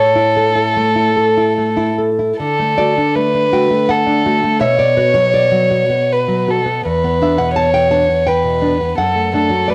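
A romantic duo for violin and classical guitar in a serene, rubato 3/4, where a dark, intimate violin sings the melody with light vibrato and an airy bow over fingerpicked nylon-string guitar with audible finger squeak, both up front with cassette-tape colour in a moderate studio reverb, the harmony moving from A through D and Bm to Em7 before settling on D/F# near 9.0 seconds in this short cut from a longer piece.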